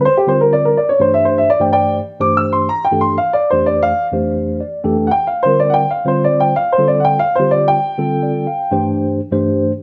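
Set in a large studio reverb with a touch of small-room ambience, this nocturnal, intense jazz excerpt at 124 BPM in G dorian puts a dark, boxy grand piano with long sustain up front on a solo melody, while a mellow, clean tine electric piano with lush chorus accompanies over chords such as Gm11, Fmaj13 and G9sus4 and adds brief fills at 4.4 and 8.0 seconds.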